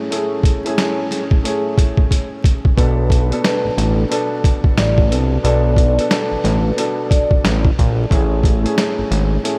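A gritty, compressed sampler-style drum kit sits up front in this moody, dark boom-bap hip-hop excerpt at 90 BPM with a swung 16th feel in B dorian, its thumpy kick, medium-tuned snare and hi-hat pitched down and re-recorded in a large room. A dark, mellow concert grand piano carries the chords over the opening break, which ends with a drum fill at 2.1 seconds. At 2.8 seconds a fat, detuned sawtooth bass with a filter sweep enters up front, and a metallic, ringing vibraphone played with soft mallets adds a band-limited, tape-echoed melody with slow motor vibrato in the background until 7.3 seconds, all under light reverb and vinyl crackle.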